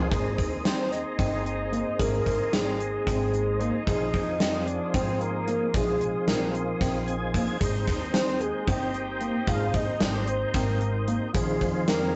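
Driving along in 7/8 at 224 BPM counted in eighths, this bright progressive instrumental in Ab major sets a punchy, gated 80s drum kit and a woody pizzicato upright bass under a smooth tonewheel organ with chorus vibrato and a slow rotary speaker up front, which adds a fill at 6.8 seconds, while a worn, slightly out-of-tune tine electric piano with medium tremolo plays arpeggios in the background and a fat, wave-folded analog lead carries the melody through tape echo from 0.7 seconds, captured as a rough rehearsal-room recording with saturation and a dull top end, cut from a longer piece.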